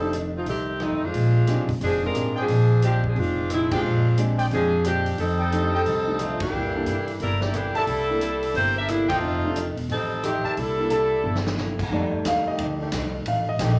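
Big band swing, energetic and joyful, with a warm saxophone section with vibrato carrying the melody up front over woody pizzicato upright bass, a dark, clean hollow-body archtop guitar in the background, an intimate grand piano with audible action noise and a punchy drum kit with dark cymbals, while a jazz-style trumpet section adds stabs from 2.4 seconds, the band hits shared accents, and a drum fill leads into a brief piano solo at 11.9 seconds joined by smooth-topped, clear trombone chords, the recording carrying light reverb, small room ambience and the warbly pitch drift of worn cassette tape in a fragment cut from a longer piece.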